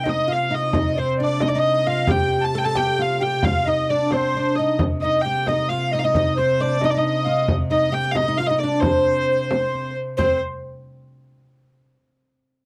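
In a straight 6/8 at 89 BPM, this mysterious, ancient-feeling medieval dance in C minor, cut from a longer piece, puts a smooth, wheel-bowed hurdy-gurdy melody up front, joined by a breathy alto recorder with vibrato and chiff and a woody, fretless plectrum-plucked oud on second lines, over a pure, floating viola da gamba drone on C3 and the soft hands of a deep frame drum, in a dry, close 1970s-style studio sound with light reverb.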